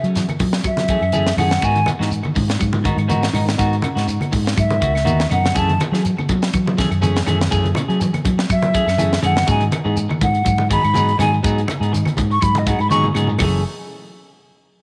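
An airy, hollow jazz flute solos over a defiant, hypnotic afrobeat groove at 122 BPM in F# dorian, backed by a dark, round fingered electric bass, a tight funk drum kit with a high-tuned snare that plays a fill at 13.0 s, clean picked electric guitar stabs, background arpeggios from a semi-hollow guitar with subtle chorus, and grainy shekere, bright low-tuned congas and woody claves, all moving between F#m9 and G#m7 in light studio reverb.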